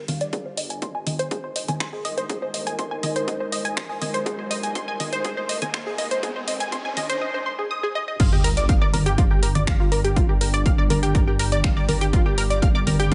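A steady 4/4 pulse comes from an overdriven, heavy electronic kick drum that arrives at 0.3 seconds, layered with a techno drum kit of congas, crash cymbal, finger snaps and hi-hat, both treated with studio reverb. This dark, dramatic melodic techno, cut from a longer piece, builds through a filter sweep on the tight sequenced synth arpeggios and the deep ambient pad until the drop at 8.2 seconds, where the harmony moves from Ab over G to Gm7. Underneath, a rumbling, detuned saw bass holds a saturated low G, high-pass filtered and pumping with the sidechain, as do the synth and pad. The moody, wave-folded pad sits in the background with ring modulation, chorus and its own reverb. Meanwhile the driving square-and-saw arpeggio synth, plucky and chorused with delay, stands forward in the mix. A riser enters at 3.4 seconds and gives way to a sub drop and impact at the drop, all set back behind the other parts, and the whole mix carries a light digital ambience.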